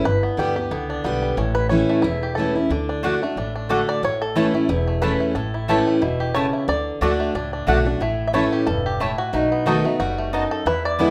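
Bluegrass at a joyful, driving 181 BPM with a light swing, cut from a longer piece, where a twangy, percussive five-string banjo played with fingerpicks takes an up-front solo throughout over a bright, freshly strung dreadnought guitar and a woody pizzicato upright bass, a double-strung mandolin adds stabs from 3.0 seconds, and a nasal, metallic lap resonator slide enters with a second line at 8.0 seconds, all set in a moderate large-studio reverb.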